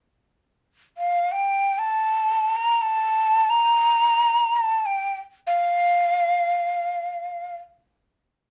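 A breathy, bright ney plays alone in free time, its end-blown reed-cane tone carrying vibrato and tongued notes between F5 and Bb5 from 1.0 to 7.6 seconds. Set up front with lifted highs and a moderate studio reverb, this brief excerpt from an Arabic maqam ensemble piece feels longing and hypnotic.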